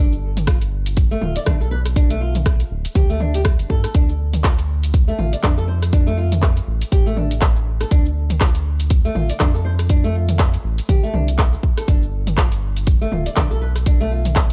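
Dry and gritty, this short excerpt cut from a longer afro house piece has an earthy, spiritual mood, moving at 121 BPM in D dorian with a swung sixteenth-note feel. A fingerpicked flamenco guitar plays acoustic arpeggios from the start, sitting back in the mix with sidechain pumping and an analog delay trailing its notes. Beneath it, a round analog bass blends sawtooth and sine tones with ring modulation, giving a deep, dark, evolving low end that also pumps with sidechain compression. The house drum kit brings handclaps, rim clicks, shaker, toms and bright hats in a layered electronic sheen, and a punchy electronic kick drum enters at 0.5 seconds, standing up front as the loudest part. The harmony shifts from Gadd9 to Dm at 3.9 seconds and settles on G at 11.9 seconds.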